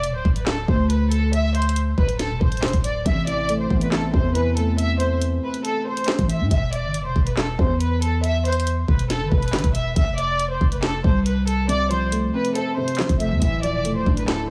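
Drill hip hop at 139 BPM with a half-time feel in A minor, cut from a longer piece, carries a dark, cold mood from the outset. Up front, a lush, bowed violin section with expressive vibrato carries the melody through a low-pass filter and tape echo, over a growling, buzzy 808-style bass and an electronic drum kit with a knocking kick, sharp snare, bright hi-hats and handclaps. A felt-muted upright piano, soft and intimate with audible action noise, adds accompaniment from 3.1 to 6.5 seconds and again from 11.7 seconds as the chords move through Amadd9, E5, F and Dmadd9.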